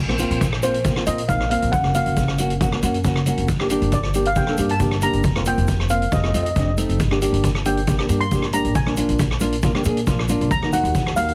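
A mellow steel pan carries the melody, its shimmering metallic tone softened by medium rubber sticks and set in a plate reverb, entering at 0.6 seconds and ranging from C5 to C6. This is a sunny, bouncy calypso in a straight four, cut from a longer piece, with chords moving from Bbsus2 through Gbmaj7, Gm and F7 before settling on Ebmadd9. Up front, a dark nylon-string guitar is fingerpicked in a classical style, while a woody pizzicato upright bass anchors the low end. A street-band drum kit of hi-hat, rim click and boomy kick sits mid-forward in a small room, its rolled-off top giving it a warm feel. A grainy, bright egg shaker stays close and dry in the background, and the whole mix carries a heavily compressed, radio-like sound with light reverb.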